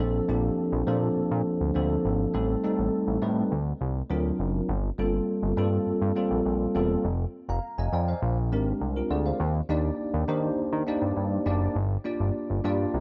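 A bell-like tine electric piano carries the accompaniment in this short excerpt cut from a longer piece of polished 1980s jazz-funk pop, its bright, clean tone sitting up front and shimmering through an ensemble chorus across the full 13 seconds. Beneath it, a fat analog bass fills the low end with a thick, nasal sawtooth-and-square-wave sound, detuned and saturated, with a fast filter pluck that then sustains. The tempo sits at 102 BPM in a straight 4/4, and the mood is slick yet bittersweet, rooted in G minor. Lush extended harmonies carry the music, moving from Bbmaj9 through Am7b5 and D7alt before a second passage opens at 4.7 seconds on Gm11 and travels through Fm11, Bb13 and Ebmaj7 to settle on Gm7. A light reverb gives the two parts a touch of space while keeping the sound direct and close.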